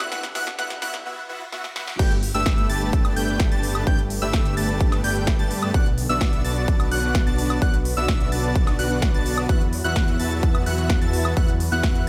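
Bathed in a high-passed digital ambience, this triumphant, anthemic festival progressive house excerpt in G major runs at 128 BPM in a straight 4/4, opening with a two-second build-up in which a very quiet riser enters at 0.3 s beneath drum fills and a short break. At 2.0 s the drop lands with a punchy, tape-warm electronic kick up front, joining the big-room kit's crisp hats, snare, crash and woodblock, all re-recorded in a large room. A huge, compressed supersaw riff with vibrato, bright plucky sawtooth arpeggios through digital delay, a dark, saturated detuned saw bass and a lush chorused pad sustaining chords in the background all pump with the sidechain over a progression moving from Gadd9 through Bm to Esus2.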